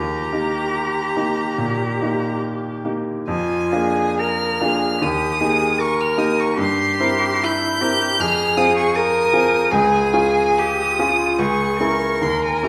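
Flexible rubato phrasing pulls gently at the 4/4 metre in this slow, tender romantic movement for piano trio, cut from a longer piece. A single bowed violin carries the melody high in its register, its tone rich and even, with vibrato and a smooth line that sits up front. Beneath it, one bowed cello plays a second line with a dark colour, its own vibrato and a rounded upper edge. The grand piano supplies the accompaniment across a broad span, sounding clear and natural near the front of the blend. All three parts play together throughout the 12.7 seconds, and the harmony drifts through seventh chords before closing on a minor shade at 11.4 seconds. A recital hall reverb of about 1.4 seconds wraps the trio in a wet, spacious glow.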